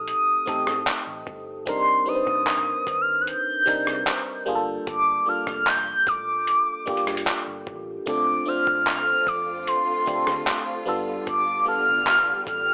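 A mellow, horn-like synth lead with a soft attack, vibrato and chorus floats up front over glassy FM electric piano, a gritty, overdriven sampler-style drum kit with thumpy kick, handclaps and rim clicks, and a round, foam-muted bass in the background, with dark, woody strings entering at 8.1 seconds in this late-night, moody contemporary R&B piece at 75 BPM, all colored by a dry, gritty, telephone-like sound.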